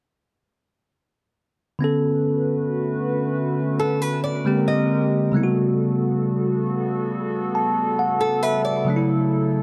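A bell-like, up-front tine electric piano carries the accompaniment in this sensual, moody R&B fragment in B minor at 68 BPM, laying down chords from Bm9 through G#maj9#11 and Gmaj9#11 to F#m7 and adding a fill between 7.1 and 8.9 seconds. Beneath it, a hollow, flute-like pad with a soft attack holds sustained chords through chorus, while a small, fingerpicked nylon-string guitar with fresh strings enters at 3.8 seconds with arpeggios carried by analog delay. The mix has light reverb and an echo-heavy sheen, and the passage is cut from a longer piece.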